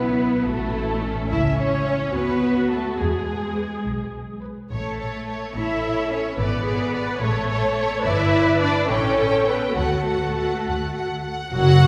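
An up-front, lush double bass section anchors this spirited, lively classical-period movement for string orchestra, moving in a quick 6/8 at 71 dotted-quarter beats per minute, with a rich, even cello section sharing the bass line beneath a focused, smooth-topped violin melody and a dark, soft-attacked second violin line. A chamber-sized viola section fills in the expressive accompaniment, and all five bowed sections sing with vibrato from start to finish. The passage, cut from a longer piece, begins in A major and turns toward D major at 8.1 seconds, heard from further back in a concert hall with a generous, wet reverb.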